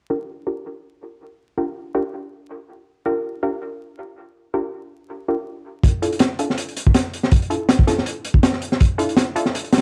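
A dark production with light reverb and vinyl crackle frames this atmospheric, raw drum and bass excerpt, a jungle piece at 162 BPM in G dorian with a lightly swung sixteenth feel. A muted, detuned sawtooth dub chord stab with chorus and dub echo enters at 0.1 seconds under a filter sweep, sounding short plucked hits on Gm7 that shift to Dmadd9 at 5.8 seconds. At that moment a crunchy, saturated breakbeat kit arrives up front, its punchy kick and high-tuned snare gritty and rolled off at the top.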